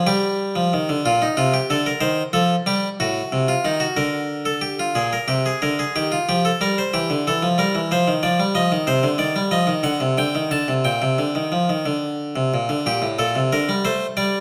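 Moving in a steady, straight 6/8 pulse, this contemplative, solemn baroque-style two-part invention is a brief passage cut from a longer piece and played entirely by solo harpsichord. The French-style instrument, strung with a single set of strings, sounds bright and plucked, sitting up front and spanning from low A2 to high A5. Its lines ring into a stone room's reverberation and move through chords such as Adim7, Gm13/D and D7 before settling on Gm at 12.8 seconds and closing on Am7.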